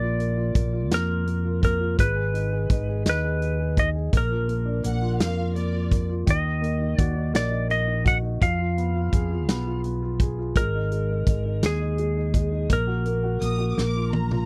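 A dark, compressed lap steel guitar carries the slide melody up front in this melancholic, dramatic six-eight pop ballad at 56 BPM in Eb harmonic minor, over a woody upright piano with audible action noise, a round, punchy fretless electric bass and a natural country drum kit that enters at 0.2 seconds and closes with a fill at 13.8 seconds, while a lush, bowed violin section adds a brief vibrato second line from 4.9 seconds, all captured in a dry, close 1970s-style studio sound.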